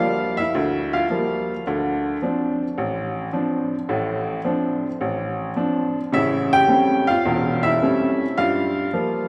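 A swinging 4/4 pulse at 107 BPM carries this short, smoky solo jazz excerpt in D minor, tuned slightly low at A4 = 438 Hz. A clear upright piano plays alone, up front and intimate, its woody, boxy tone ringing with long sustain and audible action noise as it moves through Gm7, Dm7 and an A7#9 before returning to Gm7 near 8.4 seconds. The instrument sits in a church or concert hall bathed in a wet, three-second reverb.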